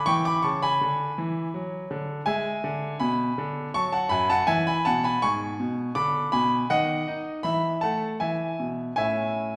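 A clear concert grand piano opens on a C# minor chord, setting a playful, graceful tone for this classical-period sonatina cut from a longer piece. The solo piano moves at a gentle 81 BPM in a straight 3/4, its smooth, vintage character resting on a deep bass that reaches down to F#2 while its range extends up to D6 in the treble. The harmony passes through D over F#, E and an F# minor add9 before returning to C# minor, then briefly falls away to a bare, unharmonised moment at 6.7 seconds before settling on A at 9.0 seconds. The piano sits up front, yet the listener is placed further back in a recital hall whose wet reverb, with a 1.5-second decay, lends the sound an airy bloom. A faint mains hum lingers beneath the playing.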